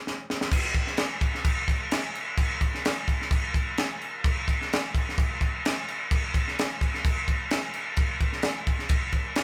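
A crisp, up-front acoustic fusion drum kit opens with a fill before settling into a playful, intricate straight rock groove at 129 BPM in 4/4, its punchy kick, high-tuned snare and bright crash cymbal ringing in a small, pumping room with light reverb, captured like a band playing live in this short excerpt cut from a longer piece.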